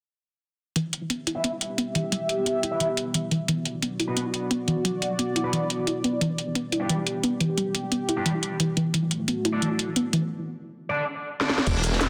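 A sweeping, resonant pad with a sub octave holds sustained chords over soft round pluck arpeggios, a cracking, metallic drum and bass kit and bright, distorted guitar stabs in this tense, aggressive dark technical drum and bass cut at 176 BPM in E minor, moving through Em, Bm, G and D with filter sweeps before a break at 10.3 seconds and a drum fill at 11.4 seconds gives way to a snarling, growling saw bass, a tight electronic kick and a gritty breakbeat kit at 11.7 seconds, all in a lush hall reverb and a dense, heavily limited mix.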